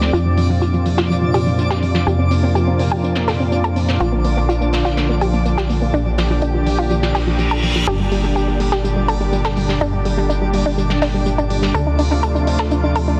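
Dense, heavily limited and lightly reverberant, this expansive, dreamy progressive house excerpt in G minor at 124 BPM moves through Fsus4, Bb, Gm and Dm7, with a lush, detuned supersaw pad and a punchy, funky sawtooth bass up front, a nasal, chorused analog pluck playing arpeggios through dub echo while filter sweeps run across both synths, a polished brushed jazz kit of snare and hi-hat sitting in a small, airy room, a smooth electronic hi-hat tucked in the background, a sparkling granular texture twinkling throughout, and a reverse cymbal sounding from 7.1 to 7.9 seconds just ahead of the Gm chord.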